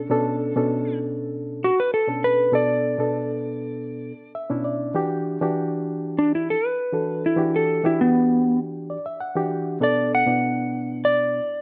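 A clean electric lap steel guitar carries the melody up front, its warm slide tone and fingered notes ranging from B3 to F#5 in this brooding, soulful blues excerpt. Beneath it, a reedy, barky electric piano plays accompaniment through its built-in speakers, also up front, bathed in spring reverb. The piano adds short fills starting around 4.0 and 8.6 seconds. The tune sits in B minor at a steady, straight 99 BPM in 4/4, moving from Bm7 to Em7 at 5.0 seconds and back to Bm7. A moderate studio reverb gives the pair a natural sense of room, and the clip ends as part of a longer piece.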